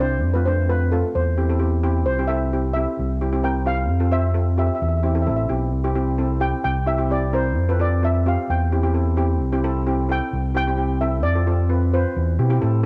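Calypso at 131 BPM in 4/4 with a straight feel, sunny and festive in C major, cut from a longer piece and lasting about 13 seconds. A lead steel pan carries the melody in a mellow, soft voice struck with soft rubber sticks, sitting mid-forward, while a second pan, a double seconds played with hard rubber sticks, supplies up-front accompaniment with a boxy small-room character. Both pans share a shimmering metallic ring and the color of cassette tape. Underneath, an overdriven fingered electric bass sounds dark, round and amped, placed up front and carrying the most weight in the mix. The harmony circles between F and C, colored by C7, Fmaj7 and Cmaj7/E, and the whole take has the intimate feel of a home recording in a small room.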